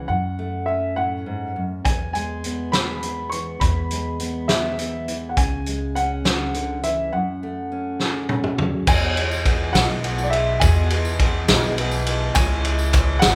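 A gritty, saturated indie drum kit with a fat snare and punchy kick joins at 1.9 seconds and drives this uplifting, nostalgic indie folk excerpt in 6/8 at 68 BPM in E major, where a clear, slightly detuned upright piano carries the melody over a woody, thumpy pizzicato upright bass and a fingerpicked dreadnought guitar, until at 8.9 seconds a bright, boxy swing-style acoustic guitar with finger squeak takes over the accompaniment beside a jingly background tambourine, and hollow group handclaps arrive at 12.4 seconds, the band playing live together in one room under a moderate large studio reverb.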